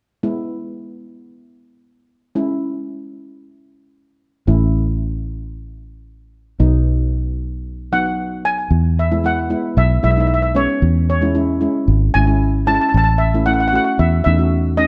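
Carefree and sunny, this calypso excerpt opens at 0.2 seconds with a double seconds steel pan alone, its soft rubber sticks drawing a smooth, shimmering accompaniment from the middle register. At 4.5 seconds a fingered electric bass arrives, its round, foam-muted tone sitting direct and amped up front and carrying the most weight in the mix. At 7.9 seconds a lead pan enters higher up with the melody, its metallic, mellow voice mid-forward and trailed by a slapback echo. The chords move easily from E through C#m, A and B, returning to E as the second section begins and passing through C#m/E to A. Light small-room reverb and a dark, warm production keep the bright instruments soft and close, and the piece stops at 14.9 seconds as part of a longer whole.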